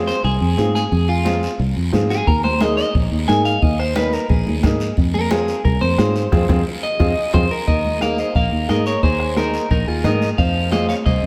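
A straight 4/4 cumbia groove moves at a quick 178 BPM, driving and fiery in mood, cut from a longer piece. A raspy guiro rings out in a live room, while bright, high-tuned congas with hard hands sit in the background, heard as distant in a large room, and a close bombo played with a soft beater joins at 2.3 s to anchor the beat. Up front, a round, foam-muted fingered electric bass holds the low end beneath an intimate, woody upright piano whose action noise is audible as it comps on Fm and Ebsus4. A twangy, scooped electric guitar on the edge of break-up carries the melody with a picked, slightly broken-up tone and spring reverb, taking a solo through the opening stretch. A band accent at 6.3 s leads into a new section at 7.7 s, and the whole mix is set back in the room with a moderate plate reverb.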